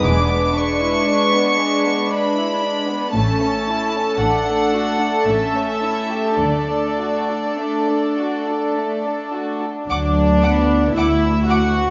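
In a slow 3/4 pulled about by gentle rubato, this tender, serene slow movement for string orchestra, cut from a longer piece, moves from E7 through A and A7 to settle on D. A clear, pure first violin section carries the floating melody high above a close, up-front second violin line and a rich viola accompaniment. Dark cellos with light vibrato and woody double basses with vibrato anchor the bass, every section bowing sul tasto, all of it set in a wet scoring-stage reverb with a rounded top end.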